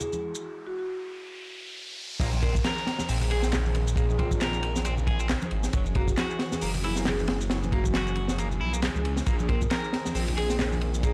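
A crunchy, saturated breakbeat drum kit punches in up front at 2.2 seconds with a punchy kick, high-tuned snare, dark cymbals across crash, ride and hi-hat, and a rolled-off top, landing with the phased, detuned sawtooth bass for a raw, energetic drop at 136 BPM in 4/4 with a light 16th-note swing. Before that, the opening break rests on a swirling, warbling analog pad with chorus, 12-bit sampler grit and sidechain pumping, while a woody marimba melody, filtered through a telephone tone and tape echo, floats above an analog electronic shaker and handclaps set in a large room and low-tuned congas in the background. An electronic riser and downlifter sound from the start and stop at 5.7 seconds. From the drop, a bright, clean, scooped electric guitar riff with tape echo joins the marimba over a thick, swirling bass. Sustained sus chords on Gb and Bb shift underneath, and the whole excerpt carries a dry, gritty hardware sound with transformer saturation.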